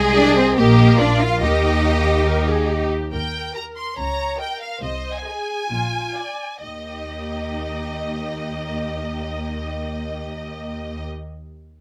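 Quick, spirited classical-period string orchestra music, cut from a longer piece, moves with graceful poise as a lush violin section carries the melody over a focused symphonic violin section on the second line, with all five bowed sections sounding throughout. Beneath them, a smooth viola section supplies even accompaniment, while a clear cello section and an up-front double bass section anchor the bass with vibrato. Light reverb gives the ensemble a gentle sense of space, and the pace slows between 2.3 and 6.6 seconds before the final section settles in.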